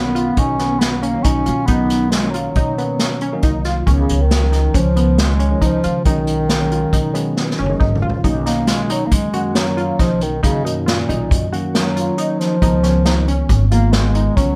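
A mellow bass clarinet with a soft attack and smooth top carries the melody in this driving, intricate progressive instrumental piece, moving in 5/4 at 137 BPM in B lydian and stepping into a classical-style solo at 8.2 s. Beneath it, a woody, growly pizzicato upright bass and an acoustic drum kit played with bundle sticks, its punchy kick up front in a roomy studio sound, push the pulse, with a drum fill at 7.4 s leading into the solo. A clean tine electric piano sits in the background through a combo amp, while a tight, detuned sawtooth synth with chorus spins plucky arpeggios, the whole set in light reverb over chords moving through Bmaj7, C#7 and B6.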